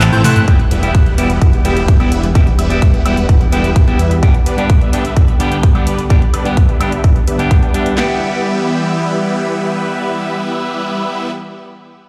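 Anthemic and euphoric, this festival progressive house passage, cut from a longer piece, opens on a band accent and drum fill before a huge, detuned supersaw lead with phaser, tape color and digital delay soars over a lush, slow-attack supersaw pad swept by a filter, a clean, picked electric guitar with delay and a fat, tube-saturated analog bass that stops at 4.2 s, all pumping to the sidechain, while a punchy, up-front big-room dance kit with kick, snare and claps, layered with a pop kit's bright hi-hats, shaker, toms and woodblock, drives the groove until the drums fall away by 8.1 s, heard through a big sound system in a bare room with large studio reverb.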